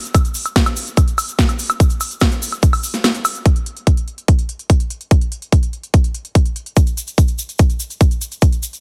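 A punchy, tape-warm electronic kick sits up front in this driving, psychedelic trance excerpt, dropping out from 3.0 to 3.5 seconds, while a layered techno kit of cracking snare, smooth hi-hats and woodblock, re-recorded in a small room, runs throughout, and a grainy, bright tube shaker sits close yet in the background, resting between 3.4 and 6.8 seconds, all in a dry mix.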